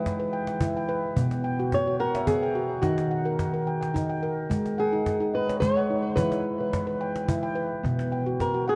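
Handpan anchors this hypnotic, gentle world meditative piece, its arpeggios ringing bright and full from stainless steel struck with sharp finger strokes, close-miked and up front across a span from B2 to G5. A thumb-plucked flamenco guitar carries the melody between E4 and C#5, its fresh strings showing finger squeak, with a delay trailing its lines. A snappy cajon with snares keeps time in a straight 3/4 at 108 BPM, captured in a small room and sitting lower in the mix from 0.1 to 8.5 seconds. The whole is bathed in a cathedral reverb with a long 6.8-second decay and carries the worn, warbly pitch drift of old cassette tape. Chords move through E5, B5, D#m and G#5 in a single section tuned to A4 = 445 Hz, and the passage is cut from a longer piece.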